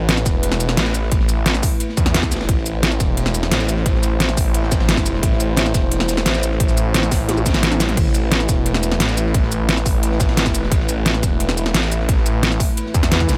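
A snarling, growling distorted saw bass sits up front, its detuned unison sawtooths and moving notch driving this dark, mechanical stretch of technical drum and bass while sidechain pumping ties it to the beat. A punchy electronic kick and an up-front, layered dubstep kit with a deep snare and crisp hats carry the groove, as a gritty, saturated breakbeat kit with dark cymbals and a rolled-off top sits in the background, and a drum fill breaks through at 7.3 seconds. Beneath it all, a moody, nasal analog pad holds sustained chords with lush chorus and its own pumping, in a dry mix cut from a longer piece.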